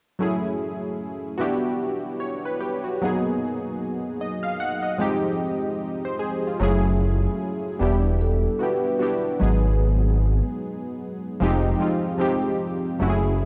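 Detuned analog keys, softened by chorus, cassette tape and a low-pass filter, carry this reflective, nostalgic hip hop excerpt at 75 BPM with a swung 16th-note feel in F# dorian, moving through lush ninth chords such as F#m9, Em9 and G#m9. At 6.6 seconds a smooth, gliding synth bass with vibrato enters up front, and from 7.8 to 9.8 seconds a mellow, airy vibraphone played with soft mallets adds a brief, ringing melody in the background. The sound is dry and gritty, with a tape-worn hardware character and only a light touch of studio reverb.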